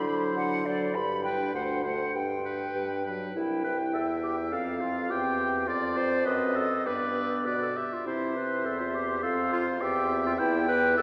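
Lively and spirited, this quick classical-period movement for wind quintet moves at 102 BPM in 2/4, starting in G major and turning to C major at 3.4 s, and it is cut from a longer piece. A silver concert flute with a pure, crisp-edged vibrato carries the melody from a distant position, the oboe sings a smooth second line with light vibrato, the clear clarinet and warm French horn fill in the accompaniment, and the up-front bassoon anchors the bass. A church or concert-hall setting wraps the ensemble in a long, wet reverb, and the top end is gently darkened.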